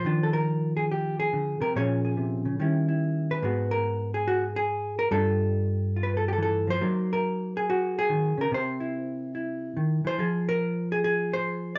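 Late-night and cool, this excerpt of solo jazz finds a clean, dark-toned hollow-body electric guitar fingered up front at 142 BPM with swung eighths and rubato phrasing, moving through harmonies such as Ebsus2, Eb7b9, C7#9 and Fm and ending on Fm at 10.2 seconds, all set in a moderate studio ambience that captures the player live in one room.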